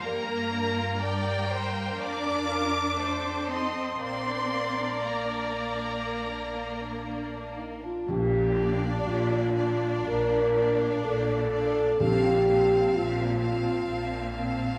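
Serene and tender, this slow romantic orchestral movement in Bb major unfolds at 60 BPM in 4/4, with uneven beats and a rubato feel that lets the phrasing breathe. The violins carry a focused, vibrato-rich melody high above a second violin line, while violas supply a smooth, lush accompaniment that sits somewhat distant in the blend. Cellos and double basses, both bowed with vibrato, anchor the harmony as it moves from G minor through F7 to a settled Bb. At 7.0 seconds a mellow French horn section enters up front with soft-attack sustained chords, the most present voice in the texture, and at 8.1 seconds timpani on Bb2 join quietly in the background with medium mallets. A wet scoring-stage reverb wraps the ensemble in a spacious glow, and the passage is a short section cut from a longer piece.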